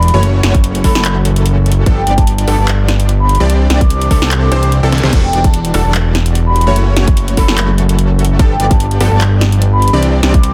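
A fat, detuned sawtooth analog bass with tube saturation sits up front in this emotional, dreamy future bass excerpt at 147 BPM in a half-time feel, alongside a hard-clipped electronic kick drum that enters at 0.5 s. A mellow, vintage vibraphone with soft mallets and slow motor vibrato carries the melody through a dub echo, while a punchy supersaw stab plays a riff and a bright, lush unison pluck adds arpeggios in the background over chords moving from F#m7 through G9, C69 and Em11 to Cadd9. A layered dubstep drum kit with a deep snare, metallic hats, handclaps and crash cymbal drives the groove and plays a fill at 4.9 s, all in a dry, dense, heavily limited modern mix where the sidechain pumping breathes through the bass, stab, pluck and vibraphone.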